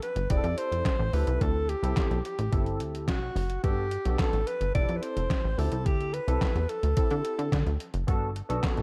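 This early-eighties boogie funk excerpt moves at a smooth, danceable 108 BPM in a straight 4/4. A detuned 8-bit drum machine starts at 0.0 seconds with a thumpy kick, medium-tuned snare, hi-hat and handclaps, its sampler-style crunch pushed through overdrive and re-recorded in a small room. A plucky analog bass follows, with a punchy sawtooth-and-square tone and a fast-attack filter pluck that decays. A barky tine electric piano sits lowest in the mix, lightly driven through a combo amp and thickened with ensemble chorus as it comps the chords Fmaj7, D7sus4 and Gmaj7. Up front, a breathy alto saxophone plays an intimate, close-miked jazz-style solo with subtone, vibrato and tape echo, ending at 7.8 seconds. Light reverb and a digital ambience frame the whole groove.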